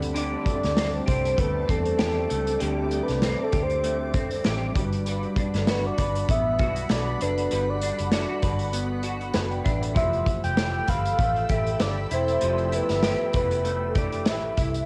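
A hazy, sunny slice of indie bedroom pop at 98 BPM with a light 16th-note swing opens on an up-front acoustic drum kit played with bundle sticks and roughened by 12-bit sampler grit. Alongside it come a dark, foam-muted fingered bass, a twangy, slightly broken-up guitar through a small old amp with chorus and vibrato, a clean tine electric piano and an ethereal, slow-attack pad in the background. From 0.2 s a round, octave-layered synth lead carries the melody as a solo, thickened by subtle chorus and analog delay, over chords moving from D7sus4 to Gmaj7 at 4.8 s and Fmaj9#11 at 10.0 s, with cassette tape colouring every part except the bass in a home recording set in light reverb and studio ambience.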